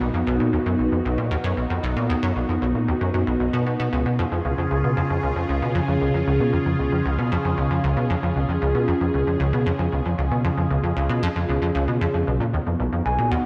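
A straight 4/4 pulse comes from a punchy, funky analog bass riff with a fast filter pluck, sitting up front under lush chorus and tape echo, while a swirling, detuned pad holds sustained chords through phaser and chorus in this expansive, luminous stretch of sequencer-driven ambient space music. The harmony rests on B before moving to C# at 3.9 seconds and returning to B. At 13.1 seconds a soft, round, octave-layered lead enters with chorus and vibrato, joined at the very end by a barely audible, warbling analog drone, all bathed in an echo-heavy chamber reverb.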